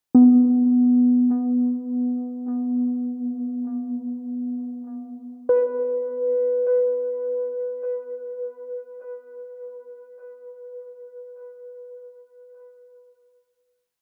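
Ambient piece in free time, melancholic and serene in mood, carried entirely by a single part of muted, felt-like synth keys playing solo from 0.1 to 11.5 seconds within a range of B3 to B4. The keys have a soft, intimate, full-bodied tone with a dark, vintage warble, built from triangle and sawtooth waves with a noise layer and a filter sweep. Each note has a fast attack and then decays, shaped by chorus and dub echo, and the part sits up front as one slow loop. A wet plate reverb with a 2.3-second decay surrounds it in an echo-heavy mix with a cassette-tape character. The opening passage runs to 5.5 seconds, after which a final note lingers until 9.0 seconds.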